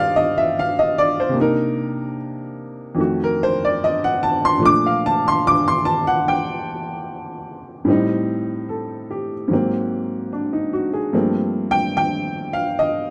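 Close, detailed and nearly dry, this brief fragment of a longer solo jazz piece puts a woody, boxy upright piano with short sustain up front, playing a cool, moody passage in G minor at an unhurried, swinging 74 BPM through rich chords such as Ebmaj7, F7b9 and Am7b5 before settling on a Gm11 at 11.1 s.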